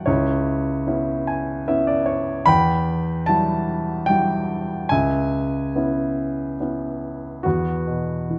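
A warm, up-front grand piano carries this wistful, dark fragment of classical solo piano, played in a lyrical three-beat rubato and spanning C#2 to B5. A piano fill runs from 0.9 to 2.5 seconds as the harmony moves through C#m7, Emadd9 and back to C#m7 before settling on Esus2. Moderate recital-hall reverb gives the sound a gentle sense of space, and the passage is cut from a longer piece.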